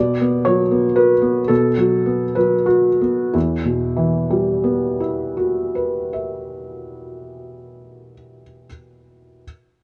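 Worn, warbling cassette tape colors this short cut from a longer piece, with a warbly pitch drift, a dull top end that stops at 10.8 kHz, and light reverb around the playing. It is a neoclassical minimalist piano piece in 3/4, played with a rubato feel, and the mood is reflective and wistful. A felt-muted upright piano plays solo from 0.0 to 9.5 seconds, ranging from E2 to E5 and tuned to A4 = 435 Hz. Its tone is soft, mellow and intimate, with short sustain and a natural, up-front presence. The opening passage rests on a Bm chord and slows down until 3.3 seconds, when the music moves into a second section built on an Emadd9 chord.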